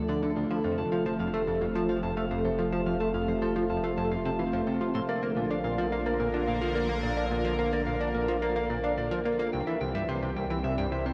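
A punchy, funky analog bass riff with a ring-modulated pluck sits up front in this cosmic, expansive slice of sequencer-driven space music at 108 BPM in F major, alongside a bright, detuned, chorused pad sustaining chords over Dmadd9, F, Bb and C, a slightly broken-up electric guitar picking arpeggios through tape echo, and a round sine sub bass, all bathed in a huge, wet ambient reverb.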